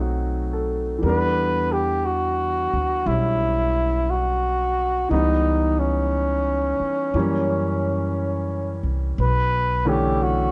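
A breathy trumpet carries the melody of this wistful, smoky jazz ballad, entering at 1.0 seconds with a whispered, intimate tone, soft attacks, scooped notes and vibrato that sits up front yet feels roomy. Beneath it, a pizzicato upright bass with gut strings gives a woody, thumpy low end, also close and present. A warm concert grand piano supplies the accompaniment with a natural sound and deep bass. The tempo is a slow 59 BPM in 4/4 with a relaxed swing on the eighth notes, and light reverb gives the trio a soft sense of space. The harmony moves through rich, tense chords from B7b9 to Em9, then C#m7b5 and F#7b9 before settling on Bm11, in a short passage cut from a longer piece.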